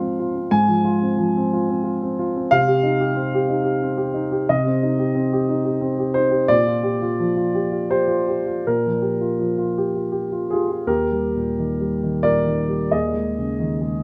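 A concert grand piano carries this short neoclassical minimalist piece alone, its tone warm and up front with a deep bass reaching down to Eb2 and rising as high as Ab5. The mood is hopeful and tender, set in Eb major with the instrument tuned to A4 = 442 Hz. It moves in 3/4 at roughly 78-93 BPM, played with a rubato feel that lets the pulse breathe. The harmony opens on Fm/Ab, passes through Cm and Bb6, then arrives on Eb at 10.9 seconds, where a new section begins, before settling onto Dbsus2/Eb at 12.9 seconds. A light reverb gives the piano a gentle sense of space, and the 14-second excerpt ends while the larger piece continues onward.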